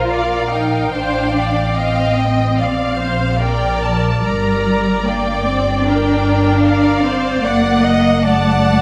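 Classical slow romantic movement for string orchestra in Bb major at 74 BPM in 4/4, taken with a serene rubato feel, cut from a longer piece and running about 8.8 seconds. A smooth, rich chamber violin section carries the melody over a clear, intense second violin line, while a lush, distant viola section fills in the accompaniment and a dark cello section with expressive portamento joins a focused, up-front double bass section on the bass. All five sections play bowed with vibrato throughout, set in moderate scoring stage reverb as the harmony moves from Bb through F/A and Gm to D/F# at 7.5 seconds.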